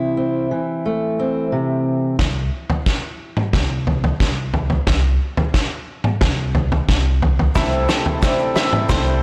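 A fingerpicked steel-string acoustic guitar opens this uplifting, hopeful indie folk excerpt in C major at 89 BPM, up front with audible finger squeak. At 2.2 seconds a woody, thumpy pizzicato upright bass and a loose, roomy drum kit with a fat snare, tight kick and rolled-off top join for a building drum fill, and the guitar drops out at 4.9 seconds. A shimmering, octave-doubled twelve-string guitar enters at 7.5 seconds, and from 7.6 seconds a soft felt-muted upright piano, a reedy, breathing harmonium, a twangy banjo playing arpeggios and a grainy, very quiet tube shaker fill out the sound, all under light reverb in a blown-out, overdriven recording.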